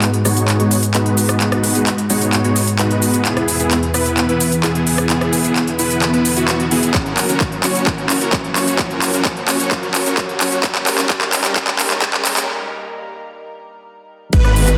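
Anthemic and powerful, this festival progressive house build-up at 130 BPM sets a huge, detuned supersaw riff under a low-pass filter sweep with delay and sidechain pumping against a lush, warbling pad on sustained chords moving from G#m7 through E and F# to D#/G, while an up-front big-room kit with crisp hats plays a drum fill, a very quiet riser enters at 3.3 seconds, a punchy tape-warm kick joins at 6.9 seconds, and after a break a bright wave-folded unison lead and a saturated, chorused saw bass arrive at 14.3 seconds, all bathed in a wet hall reverb and a dense, heavily limited master.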